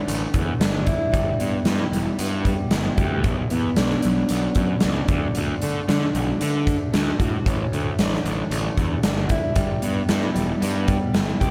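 A big arena sound opens up around this brooding, cathartic alternative rock cut, bathed in a lush hall reverb that lingers for about 2.4 seconds. At 114 BPM in a straight 4/4, a fingerpicked steel-string acoustic guitar spins full-bodied dreadnought arpeggios with fresh strings, its notes trailed by tape echo. A fuzz-laden electric bass, picked and overdriven, growls up front with a bright, amped edge, while a big rock drum kit lays down hi-hat, punchy kick and a medium-tuned snare in a roomy space. The harmony moves through Asus4, Em, Bm and D5 before circling back, keeping the E minor mood dark and searching. Cut from a longer piece, this passage holds all three parts together from the first second to the end at 11.5 seconds.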